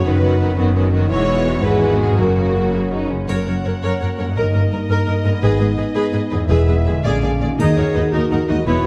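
A clear, focused violin section carries the soaring melody of this heroic, adventurous film-score excerpt in a straight 6/8, over a lush second violin line, smooth distant violas, ringing fingerpicked harp arpeggios, a close cello and expressive double bass foundation, and mellow, vintage-toned French horn chords in the background, while a bright triangle glints at 3.3 seconds, a soft, roomy clarinet joins at 7.0 seconds, and timpani strike at 7.6 seconds, all in a dark production with moderate scoring-stage reverb.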